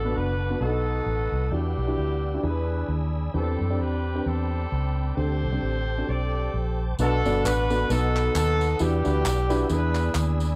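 A dry, close 1970s-style studio sound with a small room reverb frames this brief, reverent and uplifting slice of uptempo gospel, cut from a longer piece and carried by a swung 4/4 feel. A warm horn section carries the melody up front, sounding distant yet roomy and loose in a pop style, with tape echo trailing its lines. A baby grand piano supplies natural accompaniment, while a smooth, clean tonewheel organ sits in the background holding sustained chords with chorus vibrato, key click and a stopped rotary speaker. The foam-muted fingered electric bass is dark, round and amped, placed prominently in the mix. At 7.0 seconds, tambourine with maracas and group handclaps join with a close, acoustic sound as the passage moves into a new section, the harmony circling through seventh, ninth and suspended chords.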